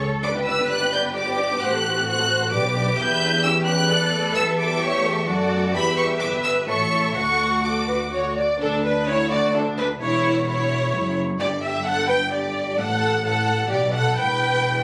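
The cello section opens this lively, graceful classical-period movement for string orchestra, a focused bowed bass at 130 BPM in 3/4 and D major, joined at 0.2 seconds by the rest of the strings. A lush, expressive first violin section carries the melody up front with soft-attack vibrato, while a dark, woody second violin line, smooth and even violas close in the accompaniment, and warm double basses beneath the cellos fill out the ensemble. Light studio reverb surrounds the sound of a phone recording in the room, and the music moves into a new section at 8.6 seconds before the excerpt ends on E minor.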